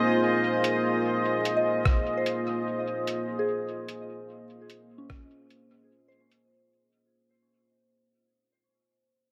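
Deep and spacious, this short ambient dub fragment, fading out across its length, sets a moody, dark pad of detuned sawtooth and sub-octave sine up front with chorus and reverb, while a soft, pure FM bell plays gentle arpeggios in the background through chorus and dub echo, a muffled, pitched-down sampler-style kit adds hi-hat and rim click with dub echo from 0.6 seconds, and a compressed, thumpy electronic kick sits up front between 1.9 and 5.3 seconds, all bathed in a wet spring reverb and vinyl crackle.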